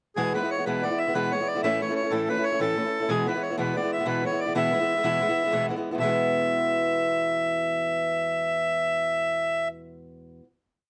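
From 0.2 s, a reedy, hollow accordion and a dark, woody, ladder-braced acoustic guitar on old strings start together in a bright, cheerful Celtic slip jig in 9/8 at 123 BPM, in E major. The close, dry, full accordion carries a motif-based melody in period phrases, while the boxy fingerpicked guitar moves through E, A and back to E with open chord shapes and driving strumming. Both instruments sit up front in light reverb, and this short whole piece settles onto its final chord at 6.0 s.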